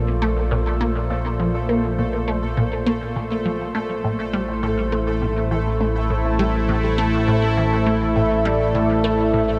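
A steady, straight 4/4 pulse drives this cosmic, luminous piece of sequencer-driven space music, cut from a longer work. A sweeping, resonant pad fades in from the start, its bright, detuned sawtooth chords swelling slowly and moving from Bb to Am at 3.7 seconds, while a fat analog bass holds a thick, nasal low Bb up front. A juicy, squelchy blip pluck repeats a short riff, its phaser and tape echo adding motion. Alongside it sits a pulsing, tempo-synced gated texture with a soft triangle tone. At 7.9 seconds an expressive portamento lead enters with a smooth, warbling, vintage voice, gliding and singing with vibrato through ensemble chorus and tape echo. The whole mix is dreamy and soaked in a huge ambient reverb, giving it a floating, spacious glow.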